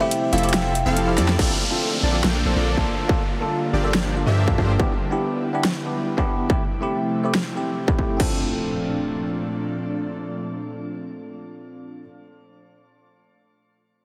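Euphoric and playful, this half-time future bass cut opens mid-drop, with a buzzing, woody kalimba melody over a bell-like tine electric piano and an airy, breathy pad, all three breathing with sidechain pumping, while a faint, lush unison pluck arpeggio sparkles in at 0.3 s. A soft, detuned supersaw riff and a deep, mellow 808-style bass also arrive at 0.3 s, the bass sitting up front and long-sustained beneath the chords. After a drum fill at 1.2 s, a distorted, layered electronic kick punches in at 1.4 s to join the dubstep kit's huge snare, bright hats and crashes, while a downlifter and impact sweep through. The supersaw and bass fall away just before 5 seconds, leaving electric piano, pad and drums to carry the progression until the drums stop near 8.3 s. The phased, tape-echoed electric piano and chorused pad then ring on under a further downlifter and impact, washed in a shimmering reverb and a heavily compressed, radio-like sheen.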